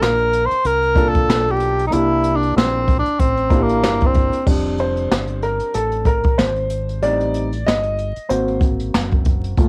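Jazz-hop at 94 BPM in F major, this short cut from a longer piece sits in a relaxed, cool mood, with a swung sixteenth-note feel over 4/4. A breathy tenor saxophone carries the melody and takes the solo for the first 4.5 seconds, its whispered tone marked by vibrato, soft attacks and scooped notes. From 4.5 seconds a dark concert grand piano takes over the solo, mellow and intimate with audible action noise and deep low notes, having supplied accompaniment from the start. A deep dub fingered electric bass holds the bottom with a round, punchy sound, while a jazz brush kit played with brushes, with dark cymbals and a boomy kick, sits up front beside the saxophone and piano. The harmony moves from a rootless Gm7 through C7 and F6 to Am7b5 and Ab9, and the dry home-cassette sound, with tape colouring on the saxophone, piano and drums, is dusted with vinyl crackle.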